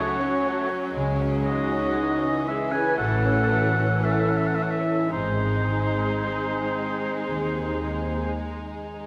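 Classical slow romantic orchestral movement, solemn and melancholic, unfolding at 54-62 BPM in 4/4 with rubato: a dark, intimate studio violin section carries the soft sul tasto melody in the background, while an up-front solo oboe with light vibrato, an expressive flute section with rolled-off highs and a pure, floating symphonic violin section weave second lines over a woody, lush viola accompaniment, distant, roomy French horn chords and a mellow, ringing harp in arpeggios, with cello and double bass sections entering around 0.9 and 1.0 s to add a warm bowed bass, the ensemble sitting in a moderate scoring-stage reverb.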